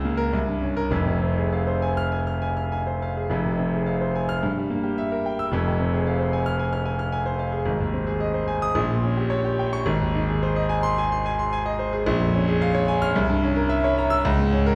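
Stormy and agitated, this classical virtuoso piano study in F minor moves at 100-114 BPM in 4/4 with a flexible, rubato feel, and it is cut from a longer piece. A clear concert grand plays solo across the full 14.8 seconds, spanning F1 to F6 with a deep bass and long sustain, set up front within a wet recital hall reverb that places the listener further back in the room. After an opening that sounds a C5 and then arrives on F minor, the music shifts at 3.3 seconds into a longer passage that moves through diminished colours and A-flat major, then Bbm7 and a tense C7b9 before settling onto a bare Db5 at 14.2 seconds.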